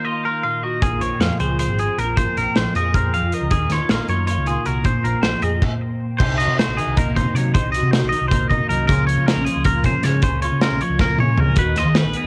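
A twangy electric guitar sits up front with bright, compressed arpeggios between Ab4 and F5, colored by phaser, tape echo and cassette tape, over a twelve-string electric guitar that shimmers with ensemble chorus as it plays accompaniment from F2 to Bb4. This intricate, restless slice of math rock and midwest emo runs in 7/8 at 312 BPM counted in eighths, with a straight feel and tuning set to A4 = 437 Hz. At 0.8 seconds a dark, round hollow-body short-scale bass enters alongside a loose indie drum kit whose tight kick, medium-tuned snare, hi-hat, toms and crash sit up front with a pumping small-room sound. The harmony moves from Ebmadd9 through Bbm11 and Ebm11 before a stop at 5.6 seconds, and the second section opens at 6.2 seconds on Cm7b5, passing through Db6 to a closing Bmaj7 after a drum fill. The small room ambience and cassette home recording give the whole a lo-fi, intimate character, cut from a longer piece.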